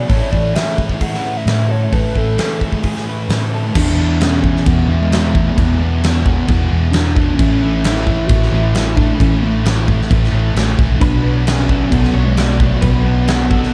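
Shoegaze-tinged dream pop rock with a hazy, dreamy mood, where a hollow, woody synth lead with warbling vibrato carries the melody over a background wall of three riffing guitars (a dark fuzz guitar with lush chorus, a double-tracked sludgy overdriven one and a semi-hollow guitar trailing reverse reverb), a clean direct-recorded guitar whose chorused, delayed arpeggios appear only until 3.8 seconds and again from 11.0 seconds, a round foam-muted bass, and a huge arena drum kit with a punchy kick and a fat snare up front, all moving from Amaj7 through E7 and A to Bm7 in a dark production.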